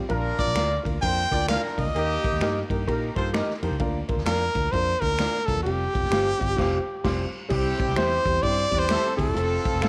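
Uptempo 1960s-style soul in Bb major at 130 BPM with a swung feel, uplifting and danceable, led by a brilliant, forceful trumpet melody with vibrato that sits close and up front. Underneath, a dark, woody upright piano with audible action noise, a round, foam-muted electric bass, a vintage drum kit with a punchy kick and rolled-off top, mellow electric guitar stabs in the background and dry finger snaps keep the groove moving. A smooth horn section with tape echo plays a second line, drops out at 3.3 seconds, then returns at 7.5 seconds just after a band accent at 6.6 seconds, all in a light reverb.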